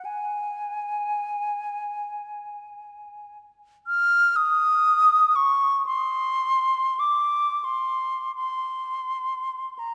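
A dark, warm sound sits in a wet church reverb that lingers for about 3.2 seconds, with a lone silver concert flute placed up front. In this short classical fragment, cut from a longer piece and played in free time, the flute sings alone for the full 9.9 seconds in its upper range between G#5 and F6. Its airy, mellow tone, soft attack and expressive vibrato give the music a mournful, lonely character.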